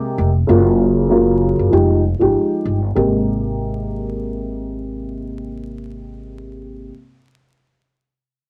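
A short passage from a longer piece, captured as a home cassette recording with vinyl crackle and light reverb. It is a nostalgic boom-bap hip-hop groove in 4/4 with a swung sixteenth-note feel. A dark upright piano carries the accompaniment from the first moment, sounding mellow, worn and slightly detuned, with audible action noise and a cassette-tape coloring that keeps it intimate and up front. A pizzicato upright bass with steel strings joins at 0.2 seconds, woody and close, holding down the low end. The harmony moves through Gbmaj7 and Fm9 before settling on Abmaj9 at 3.0 seconds, where the passage turns to its second section and carries its vintage glow to the end.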